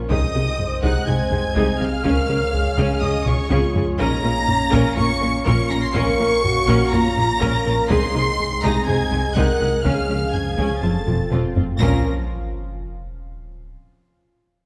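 This tense, relentless cue from a hybrid orchestral and electronic film score in Bb minor, cut from a longer piece, opens at 0.0 seconds on a hollow, airy, flute-like pad with chorus, a mellow French horn section holding sustained chords, and a deep sub bass doubled at the octave. Bowed string sections join at once: violins carry a focused, vibrato melody high above a lush, expressive second violin line, while smooth violas accompany and very quiet cellos and double basses reinforce the low end. A soft, round pluck with chorus traces dark arpeggios, and a rubbery, bouncy square bass riff sits in the background. A very quiet taiko ensemble struck with heavy sticks drives the straight 4/4 pulse at 123 BPM, adding drum fills along the way. The harmony moves through Ab/C, Db and Bbm, touching F before returning to Bbm. At 11.8 seconds an up-front electronic sub drop lands as an impact, all set in a wet scoring-stage reverb.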